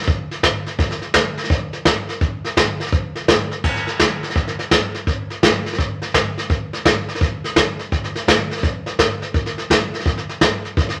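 A swung rock groove at 168 BPM in 4/4 drives this retro, upbeat excerpt, played entirely on a jazz drum kit with brushes from 0.0 to 10.9 seconds. The kit sits up front with a dark, smooth character: dark cymbals, a medium-tuned snare, a boomy kick and a rolled-off top, with crash, hi-hat, kick and snare all heard. A moderate studio reverb gives the room a gentle tail as the music moves into a new section at 3.6 seconds.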